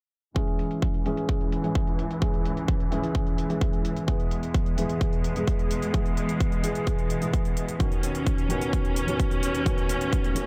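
A punchy, tape-warm electronic kick drives a straight pulse alongside crisp, layered electronic hi-hats softened by a low-pass filter, in this anthemic, euphoric festival progressive house excerpt cut from a longer piece. Up front, a felt-muted upright piano plays mellow, intimate accompaniment with sidechain pumping and delay, while a distant, lush studio string section holds bowed, vibrato-rich chords under a filter sweep and its own pumping. The harmony moves from C#m to E to Badd9/D#, and a small room reverb gives the mix a close, intimate space.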